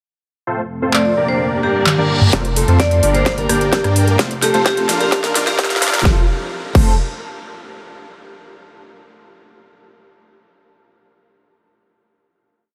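Polished and lightly reverberant, this short, triumphant festival progressive house piece in F major at 129 BPM opens with a lush, detuned unison pad and a huge, dense supersaw riff in dotted-rhythm chords with sidechain pumping and dub echo, joined by a bright vibraphone melody struck with hard mallets and an overdriven big-room drum kit with a massive snare and metallic hats, while a very quiet reverse cymbal and riser lead into the build at 2.3 seconds, where a punchy four-on-the-floor electronic kick and a deep saturated sine sub bass arrive, followed shortly by a fingerpicked acoustic archtop guitar in the background, before the piece settles on a final F chord at 6.1 seconds.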